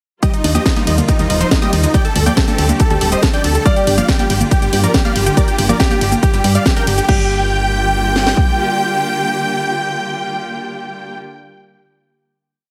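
A straight four-on-the-floor kick and a cracking snare from an overdriven house kit drive this short uplifting trance piece. A second overdriven kit layer adds shaker, open and closed hats, ride, high congas and crash in a programmed backbeat, both kits re-recorded in a large room, with the first sounding up front. Beneath them a round, dark FM bass plays off-beat notes, while a huge, detuned supersaw lead carries a euphoric repeating riff in thirds and sixths over a sixteenth-note pedal note, doubled an octave higher by a sawtooth pluck. A full-bodied pluck steps through a 32-step arpeggio sequence, and a dark, smooth-topped symphonic string ensemble with vibrato holds sustained chords, with the bass, strings, lead and plucks pumping to the sidechain and the lead, plucks and piano trailing digital delay. A brilliant grand piano enters at 3.7 s with its own repeating riff, the drop gives way at 7.1 s to a final chord, and the drums are gone by 8.5 s, ending in a bittersweet glow under light reverb and a heavily compressed, radio-like sheen.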